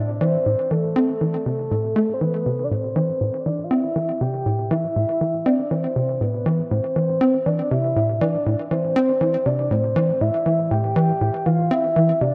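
A tight, punchy sequencer bass with a dark filter pluck drives its riff from the very start, alongside a soft, round octave-layered synth lead singing a sustained, vibrato-tinged melody with chorus, tremolo and delay, in this mysterious, expansive ambient excerpt at 120 BPM in A minor, held on an A minor chord and bathed in a moderate plate reverb, with the section shifting at 2.7 seconds.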